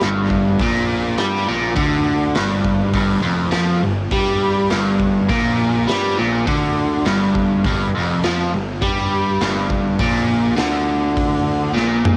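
This short cut from a longer garage rock piece sounds like a home cassette recording, with light reverb giving it a raw, swaggering character. At a straight 102 BPM in 4/4, a biting, overdriven electric guitar sits up front, double-tracked and picked, driving a low riff that starts on a G5 chord. Underneath, a fuzz-laden picked electric bass adds a bright, growly edge through overdrive and tube saturation. The acoustic drum kit has a punchy kick, a medium-tuned snare, hi-hat and toms, all set in a pumping stone room with a gritty, saturated sound and a rolled-off top. The three parts play together throughout, and the drums close the passage with a fill from 11.8 to 12.2 seconds.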